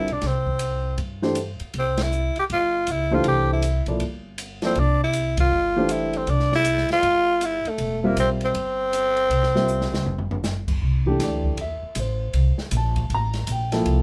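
A raspy, growling tenor saxophone states the melody over warm baby grand piano chords and woody pizzicato upright bass, with an airy, dark-cymbaled drum kit joining just after, in an open, searching modal jazz piece in C mixolydian that swings at 158 BPM. The band hits accents at 1.9 and 5.3 seconds, and a drum fill from 9.7 seconds carries the tune into a new section, where the saxophone falls silent and piano, bass and drums carry on. The saxophone, piano and bass sit up front, while the boomy kick and polished kit sit further back in a moderate studio reverb.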